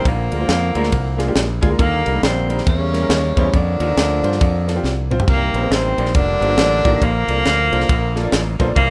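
A swung eighth-note feel in 4/4 drives this short, jubilant slice of uptempo gospel, cut from a longer piece. A tight funk drum kit sits up front with a high-tuned snare, a tight kick, ride and crash cymbals, and toms, and it plays a fill from 4.8 to 5.3 seconds. The fingered electric bass is bright, punchy and direct in its low register, while an upright piano, clear and woody yet worn and slightly detuned, carries the accompaniment with long sustain and plate reverb. Leading the melody, a loose horn section in jazz style plays in octave doubling with light vibrato, a smooth top and a tape echo, giving a warm glow. The harmony moves through rich seventh and suspended chords, from Bb7 to a closing Bbmaj7. The whole has the uplifting energy and rough balance of a home demo in a small room.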